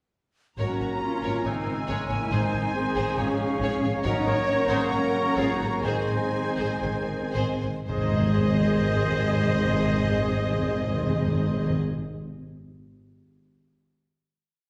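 A heroic adventure film cue in Ab mixolydian, soaring and adventurous, moving at 110-141 BPM in a straight 4/4 and slowing down from 3.2 to 7.9 seconds as the theme gives way to a final chord held until about 12 seconds. A lush violin section with a smooth, focused top carries the melody over dark trombones and mellow French horns in sustained chords, dusky trumpet stabs, a second violin line with a driving ostinato, an expressive viola part with portamento, an airy flute and a distant oboe holding sustained chords, and a vintage-toned clarinet doubling the tune in the background. Woody cellos and a close, even double bass section anchor the bass, a ringing harp spreads broken chords, and round soft-mallet timpani strike single bass notes from 2.3 seconds and again from 7.9 seconds, all set back in a reverberant recital hall.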